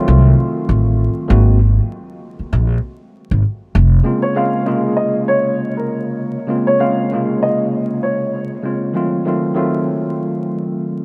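A mellow tine electric piano opens this reflective, gritty boom-bap hip-hop excerpt in Bb minor at 98 BPM, its worn, slightly out-of-tune tone coloured by cassette tape and filtering, with a swung 16th-note feel in 4/4. An up-front upright bass enters at 0.1 s with a woody, thumpy gut-string pizzicato, holding low in its register until it stops at 4.0 s. The chords shift from F7b9 to Ab9 at 1.3 s, and a break from 1.6 s carries the music until the second section arrives on Bbm9 at 4.1 s. There a dark upright piano carries a smooth, vintage melody from 4.2 to 8.5 s, touched with subtle chorus and a diffuse ambient delay, before the harmony returns to F7b9. The dreamy mix is soaked in a long cathedral reverb and dusted with vinyl crackle.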